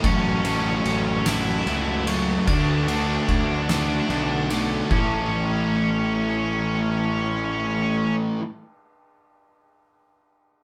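A band playing live in one room, with moderate reverb, delivers this soaring, cinematic post-rock excerpt in A major at a slow 49 BPM in 6/8, moving from F#m/A to D and settling on A at 4.9 seconds. An oversized, low-tuned acoustic kit with a punchy kick, fat snare and dark ride cymbal pumps in a stone room and stops at 5.1 seconds. Over it, a cranked stack guitar sings a narrow overdriven melody, a compressed fuzz guitar and a sludgy guitar in the background churn out riffs, a growly fuzz bass holds the low end, and a very quiet, sparkling glockenspiel rings out arpeggios until 5.3 seconds.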